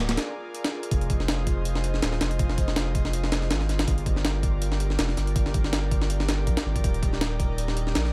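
A digital ambience surrounds this short, raw and frenetic drum and bass cut, with its jungle roots showing in a gritty, sampler-style breakbeat kit at 162 BPM in 4/4, swung at 54% on the sixteenths. The drums sit up front, compressed, with a thumpy kick, a high-tuned snare and hi-hat, entering at 0.1 seconds, and a break arrives between 0.2 and 0.9 seconds. Beneath them, a thick, saturated sine sub bass with a fast attack holds sustained notes deep in the low register, equally forward in the mix. An airy, breathy pad blends triangle and sawtooth tones with a noise layer, swelling in slowly and hanging on a long release, its soft but bright chords treated with chorus and sitting well behind the bass and drums. Set in F dorian, the harmony moves from Bb7/D to Fm7 at 0.9 seconds, then through Gm7 to Ebmaj7 at 6.8 seconds, as this fragment is lifted from a longer piece.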